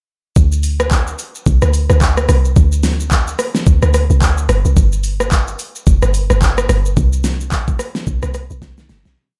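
Hypnotic and deep, this short amapiano piece at 109 BPM in 4/4 with a 58% sixteenth-note swing runs as a single drop from 0.4 seconds. It pairs an up-front log drum bass, round, dark and percussive with a fast attack, a noise layer and sliding syncopated bursts between F1 and D2, with a produced electronic R&B-style kit of knocking kick, fat snare, warm hats, handclaps, steady shaker and syncopated rim clicks, sitting up front with a small-room sound under light reverb, before a fade-out from 7.0 seconds and a closing drum fill at 8.6 seconds.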